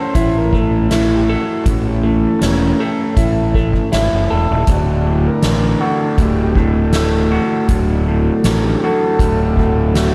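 An overdriven combo organ and an electric guitar through a small old amp open together at 0.0 seconds, the organ holding reedy, vintage sustained chords under a lush chorus while it takes a solo across the whole passage. The guitar plays a dark, slightly broken-up riff with a phaser, sounding lo-fi, compressed and up front. A soft-mallet drum kit enters at 0.1 seconds with a fat snare, punchy kick and hi-hat in a natural hall tone, and the fuzz fingered electric bass arrives at 0.2 seconds, round and overdriven in its low register. This psychedelic rock fragment moves at a slow 80 BPM in a straight 4/4, trippy and mysterious in mood, with the harmony shifting from A to D. Light reverb and a small room ambience surround the whole band, in what is cut from a longer piece.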